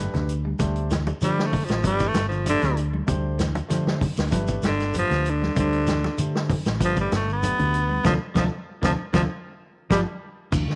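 A raspy, gritty baritone saxophone leads this driving, defiant afrobeat excerpt at 97 BPM, soloing up front from 1.2 seconds over a dark, round hollow-body bass, a punchy vintage drum kit with dark cymbals, soft-handed congas, a grainy shekere, clean picked semi-hollow guitar arpeggios with analog chorus, and a barky tine electric piano with subtle chorus, moving among G, Dm9, G7, D7sus2 and Dm7 chords, with a band accent arriving at 8.1 seconds.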